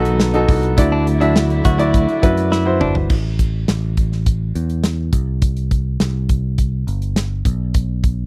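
A straight 4/4 pulse drives this dramatic piano-driven pop fragment, cut from a longer piece. A clear concert grand piano with deep low end sits up front alongside a punchy studio drum kit with bright cymbals, a medium-tuned snare and toms, while a growly picked electric bass pushes from underneath. Very quiet, lush bowed strings hold sustained chords with a soft attack and vibrato, and a compressed, clean electric guitar, recorded direct, adds a brief picked riff in the opening phrase as the harmony moves from B to Dadd9. A drum fill at 2.5 seconds leads into a new section at 3.1 seconds, where piano and strings drop away and the bass and drums drive on over A5 and C5 power chords before the harmony falls away at 7.5 seconds. The sound is dry and close, in the manner of a 1970s studio recording.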